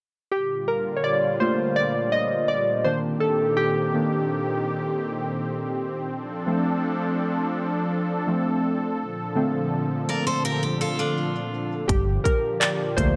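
Analog synth keys lead this brief contemporary R&B excerpt from 0.3 seconds, their round square and sawtooth tone shaped by a filter sweep and a fast, decaying attack, mellow and touched with chorus. Beneath them a vintage analog pad holds smooth, detuned sawtooth chords with a slow attack, its warbling tone coloured by chorus and breathing with sidechain pumping. The mood is sensual and late-night, the harmony drifting through Gm7, Cm7, Dm7 and Bbmaj7 before settling back on Gm7. A picked steel-string acoustic guitar slips in with delayed arpeggios at 10.1 seconds, and at 11.9 seconds a dark, punchy fingered electric bass arrives alongside a produced trap kit of hard-clipped kick, crisp hi-hats and handclaps. The sound is close and present, set in a light digital ambience.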